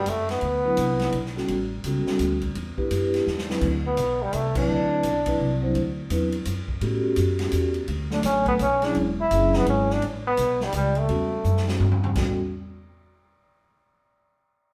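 A swinging 3/4 pulse at 169 BPM drives this short cut from a longer small-group jazz piece in A mixolydian, with a warm, sophisticated mood. The upright bass plays pizzicato throughout with a woody tone, while a big-band drum kit with a punchy kick, medium-tuned snare, ride, hi-hat, crash and toms keeps the swing going, adding fills at 3.3 and 11.5 seconds. A bright trombone carries the melody in short, forceful phrases, entering at 0.0, 3.9 and 8.1 seconds, its light vibrato and jazz phrasing sitting up front despite a roomy, distant quality. A soft-mallet vibraphone joins at 0.6 seconds as accompaniment, its mellow, vintage ring shaded by slow motor vibrato over a harmony that moves through rich chords such as D13, A13, Bm7 and E13. The band lands a shared accent at 4.5 seconds, and the whole group plays live together in a stone room with a wet reverb.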